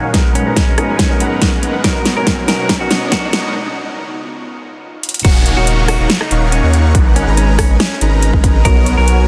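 A thick, detuned supersaw riff runs through this emotional, bittersweet future bass passage, cut from a longer piece, its sawtooth unison colored by cassette tape, a low-pass filter sweep through the build-up and sidechain pumping. At 141 BPM in Eb minor with a half-time feel, a punchy electronic kick and a big-room dance kit, with a huge, softly clipped snare and metallic hats, sit up front and play a drum fill across the opening. An ethereal, airy pad holds sustained chords in the background, a baby grand piano adds background accompaniment through digital delay, and a warm, clean semi-hollow electric guitar carries the melody through spring reverb and delay. Risers and downlifters hover behind. After a break, the drop lands at 5.2 seconds, where a deep, saturated sine sub bass enters. The chords move from Abm9 through Bmaj9 and Db9 to Ebm11, and the dense, heavily limited master gives the mix a full, modern sheen.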